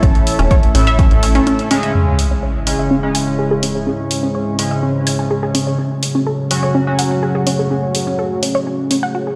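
This hypnotic, dark slice of melodic techno opens at 125 BPM in 4/4 with a punchy electronic kick, analog-toned hi-hats and a tight, saturated sawtooth sequencer bass driving under a full bed of synths, all in C# harmonic minor and tuned to A4 = 436 Hz. A lush, detuned unison pluck spins arpeggios with a noisy, ring-modulated edge and dub echo. An edgy, up-front sync-sweep polysynth cuts through with nasal, wave-folded stabs. Behind them, a deep, moody analog pad holds sustained chords, and the pad, pluck, polysynth, bass and hats all pump to the sidechain. The kick and bass drop away within the opening seconds, leaving a brief break before an electronic sub drop lands as an impact at 1.9 s, and an evolving, resonant pulse-width drone fades in softly in the background at 3.9 s. The harmony moves from A to C#m and on to F#madd9, all set in light digital ambience and the stony reverb of a bare room heard through a big sound system, as a cut from a longer piece.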